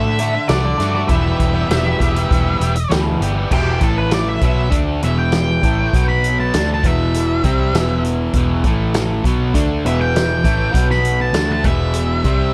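Classic rock in E minor at 99 BPM, this swaggering, gritty clip cut from a longer piece rides a straight 4/4 feel. An up-front, bright, double-tracked overdriven semi-hollow guitar picks out the riff over a round, foam-muted vintage electric bass and a natural-sounding vintage drum kit with a punchy kick, medium-tuned snare and dark cymbals. From 3.5 seconds an octave-fuzz lead guitar, gritty and shadowy with tape echo, takes a solo over chords that circle back to Em between A5 and B5, all in a dry mix with little reverb.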